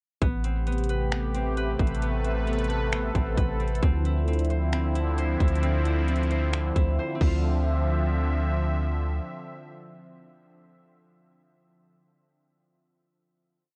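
Dry and worn, this short atmospheric cloud-rap piece sits on warbling cassette tape whose pitch drifts, lending its ethereal, melancholic mood a hazy unsteadiness. A bright, detuned sawtooth pad with chorus and sidechain pumping sustains Am9 and then Dm9. Over it, a fingerpicked concert harp, passed through a low-pass filter and digital delay, repeats a ringing eighth-note arpeggio like a sampled loop, and a deep sine 808 bass holds long, dark sub notes that follow the kick. The trap kit brings a hard-clipped kick, metallic hats with fast rolls, finger snaps and a crash in a sparse half-time beat roughened by 12-bit sampler grit, stopping at 7.3 seconds. The pad, harp and 808 then carry the final hit, with the bass fading at 9.2 seconds and the pad and harp ringing on to 10.3 seconds.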